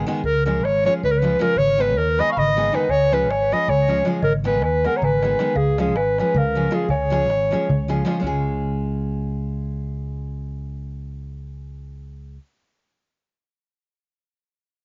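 Exuberant and wild, this Balkan wedding-band fragment, cut from a longer piece, races along in a straight 7/8. A warm, smooth-topped clarinet leads the melody up front in a classical style, colored by cassette-tape grit and an analog delay, until it stops at 7.9 s. Beneath it, a bright, full-bodied nylon-string guitar is fingerpicked with audible finger squeak. A growly, punchy fingered electric bass holds the low end, and both carry on to 12.4 s. A small clay-shell darbuka, played with soft hands, sits in the background. From 2.2 s, a worn, bell-like celesta adds a delicate, slightly out-of-tune second line, close-miked and dry, and the whole home cassette recording has a dull top and a snug booth ambience.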